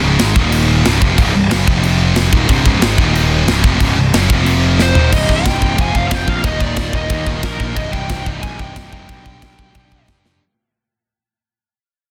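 Relentless and epic, this heavy metal excerpt in C minor charges at 182 BPM in a straight 4/4, with a bright, high-gain distorted guitar and a sludgy, overdriven guitar sitting in the background driving the riff alongside a growly, fuzz-drenched picked bass, while a tight, polished drum kit with airy bright cymbals and a tight kick sits up front, fills at 4.8 seconds as a dark, high-gain lead guitar enters to carry the melody, and the whole dense, heavily limited, nearly dry mix fades out from 5.1 seconds over chords moving through C minor, F and Eb power chords toward G/B.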